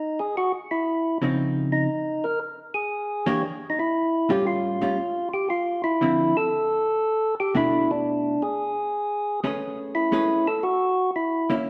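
A fat, lightly overdriven tonewheel organ carries the melody up front from the first moment, its percussive third-harmonic attack and key click ringing through a stopped rotary speaker in this bluesy, swinging jazz excerpt at 117 BPM. A dark, clean hollow-body electric guitar, picked and compressed, enters at 1.2 seconds to comp beneath it through rich chords such as Dbmaj9, Aaug7 and Dm9. The two play live together in a stone room whose wet reverb gives the short passage an echoing glow.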